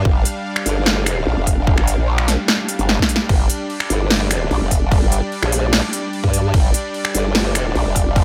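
A saturated, detuned growl bass snarls up front through chorus and overdrive alongside a pulse-wave wobble bass with a sweeping formant filter that drops out at 1.3 seconds and returns at 3.9 seconds. This chaotic, menacing heavy wobble dubstep in G minor runs at 148 BPM with a half-time feel, driven by a punchy electronic kick and a big-room dance kit of crisp hi-hats, snare, finger snaps and crash cymbal, with a drum fill at 2.9 seconds. Behind it all, a lush supersaw pad holds sustained chords with sidechain pumping, lower in the fairly dry mix of this short cut from a longer piece.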